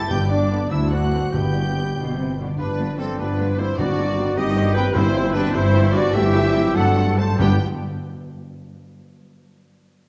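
A clear, lush violin section carries the melody in this graceful, spirited excerpt from a dramatic romantic orchestral movement in a rubato 6/8, joined on second lines by a mellow, hollow flute, a warm oboe, a very quiet second violin section and, from 2.6 s, a clarinet, while a bassoon adds accompaniment until 2.3 s beside expressive violas with portamento, ringing harp arpeggios, rich cellos and double basses in the background, soft horn and bright trombone chords, dark trumpet stabs and articulate hard-mallet timpani, set in a wet recital-hall reverb.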